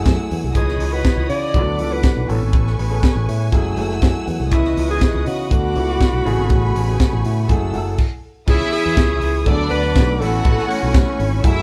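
Recorded with light reverb as a band playing live in one room, this driving, danceable disco excerpt at 121 BPM rides on a dry, high-tuned funk drum kit and a growly, punchy fingered electric bass, while an intimate grand piano with audible action noise accompanies and a biting symphonic string section sustains the chords, a breathy, whispered alto saxophone carries the jazz-style melody, the piano adds a fill at 3.5 seconds, the band stops at 8.0 seconds, and a smooth-topped studio string section joins with a second line from 8.5 seconds.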